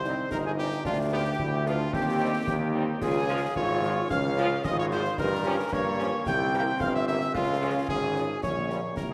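In a straight 2/4 at 111 BPM, this stern, martial military-style wind band march, cut from a longer piece, sets a punchy solo cornet melody over second lines from an airy, distant flute ensemble and a mellow woodwind section, while a vintage-toned French horn section, dark trombone chords, up-front clear tuba bass, and close, dry concert snare, bass drum and dark clash cymbals fill out the texture in a wet scoring-stage reverb over harmony moving from Cm through Db to C7.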